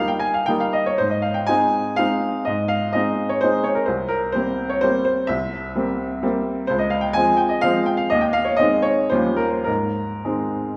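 Graceful and playful, this short classical piano waltz in Ab major sways in 3/4 with a rubato feel between 100 and 135 BPM, a solo upright piano sounding brilliant, woody and up front as it ranges from C2 to Ab5, moving through chords such as C7, Dbmaj7 and Eb9 before settling on Ab, all bathed in the wet reverb of a recital hall, cut from a longer piece.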